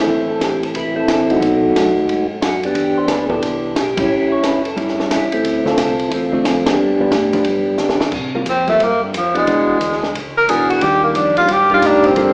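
The tenor saxophone stands out most, entering up front at 8.5 seconds for a solo with a soft attack, vibrato and a distant, roomy jazz tone. This greasy, bluesy soul jazz organ trio fragment swings in 4/4. Before the saxophone arrives, a percussive tonewheel organ carries the melody with a round, third-harmonic percussion sound through a slow rotary speaker. A second, mellower organ voice holds down the bass with key click and vibrato. A dark, compressed hollow-body electric guitar comps underneath, while a compact cocktail kit with a high-tuned snare, punchy kick and rolled-off top marks two band accents and plays a fill at 7.8 seconds. The chords move from Fmaj7 through a series of seventh chords to Ebmaj9, all bathed in a wet recital-hall reverb with a small-speaker character.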